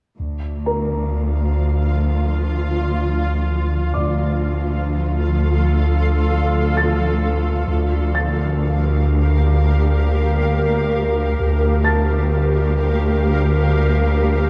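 This eerie, uneasy cinematic excerpt in D minor opens at 0.2 seconds on a low D, held by a lush, bowed cello section with a focused, distant vibrato, a smooth double bass section sitting in the background, and a deep, punchy sine sub bass drone that sets in with a pitch-drop attack. At 0.7 seconds a natural-sounding baby grand piano adds a high, warm texture. A granular cloud pad arrives at 1.3 seconds, placed up front with sustained chords that feel blurred, detuned and evolving, wrapped in their own reverb. The piece moves in free time, resting on D minor before shifting to Bb6 over D at 7.7 seconds. Light reverb and a dark, warm production frame the low strings and drone beneath the hazy pad.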